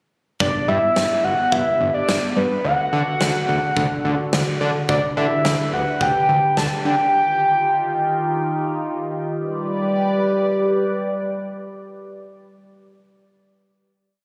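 Upbeat yet wistful, this short synth-pop piece in G major moves at 107 BPM, with a full, round octave-layered synth lead carrying a motif-based melody with chorus, delay and vibrato over a swirling, nasal phased analog pad. Underneath, a fat, detuned sawtooth bass with a filter sweep and a huge, punchy arena drum kit playing a straight drum-machine beat drive the verse until the drums drop out at 6.7 s. The lead stops at 8.8 s, and the evolving pad holds the final G chord until 12.4 s, all heard through a lush hall reverb on a phone recording of the room, with added studio reverb and compression.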